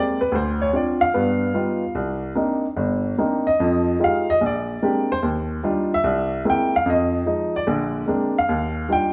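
Solo jazz in Eb major at 147 BPM, relaxed and swinging with a lilting triplet feel, cut from a longer piece and lasting about 9.1 seconds. A lone upright piano carries everything, its woody, intimate tone sitting up front with audible action noise, ranging from deep bass notes to the upper register over rich extended harmony such as Cm9, Bb13 and Ebmaj9. A wet stone room reverb gives the live performance a natural sense of space.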